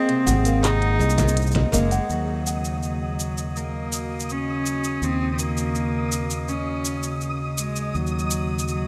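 A soft-attacked, bowed cello sings the melody up front with a pure, floating sul tasto tone and delay, over a warbling, nostalgic tape-like pad whose detuned lo-fi chords carry chorus and vintage sampler grit in this intimate, autumnal folktronica excerpt. A boxy, ladder-braced acoustic guitar picks delayed arpeggios and a slightly out-of-tune music box adds a tinkling second line in the background. Both fall away by 2.1 s as the harmony moves from Abadd9 to Ebm7, while a dark, saturated kick drum also drops out early. A smooth-hatted electronic kit with cabasa and handclaps and a direct fingered bass carry on beneath, and a grainy, flickering texture enters at 2.5 s, all soaked in a huge, dreamy reverb.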